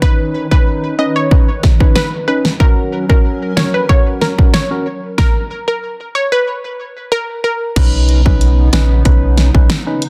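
This bouncy, summery dancehall excerpt moves at 93 BPM in B major, with a punchy, layered electronic drum kit of kick, fat snare, hi-hat and crash sitting up front, while a dark, hollow percussive organ stab with chorus and sidechain pumping adds accompaniment over a mellow, warbling, flute-like pad holding sustained chords in the background. A bright, detuned sawtooth pluck carries the melody with chorus and tape echo, and a stop falls between 5.2 and 7.8 seconds. At 7.8 seconds a deep sine sub bass with a pitch-drop attack arrives as the harmony returns to Badd9, all under a dense, heavily limited modern master with digital ambience.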